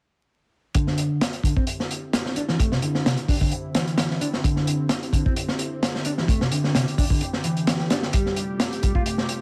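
A 4/4 breakbeat groove with a light swing on the sixteenths drives this energetic, gritty cut from a longer breaks piece, as a crunchy acoustic drum kit of tight kick, medium-tuned snare and hi-hat kicks in at 0.7 seconds. The drums sit up front, saturated and dark with a rolled-off top, sounding like a small room. A mellow, clean electric guitar plays a fingered riff almost at once, its dark tone shaped by tube saturation, tape echo and a low-pass filter sweep that runs through the whole passage. From 1.3 seconds a quieter analog pad holds sustained chords underneath, a detuned sawtooth sound made swirling by phaser and chorus, with a slow attack, long release and sidechain pumping. The harmony rests on D9sus4 before moving to G9sus4 at 8.1 seconds, and studio reverb and vinyl crackle lend the whole mix a worn, lived-in grain.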